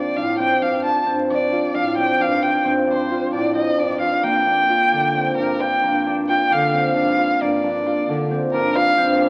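A dark, expressive violin carries the melody with vibrato, portamento and a soft attack, up front over a ringing, fingerpicked concert harp playing arpeggios and a mellow bass clarinet holding the bass line, in this pensive, restless fragment of contemporary chamber music in 7/8, cut from a longer piece and heard through a wet recital hall and the crackle of a very old 78 rpm record.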